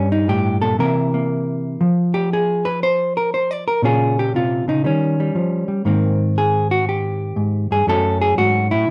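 Sophisticated and relaxed, this short solo jazz cut from a longer piece swings at 118 BPM in 4/4 as a clean, dark, up-front hollow-body electric jazz guitar, fingered across a range from Gb2 to D5 in light reverb, moves through chords such as Gmadd9, C7, Bbm, Eb7 and Abmaj9, with a chordless stretch from 1.8 seconds before settling on Gbm at 7.9 seconds.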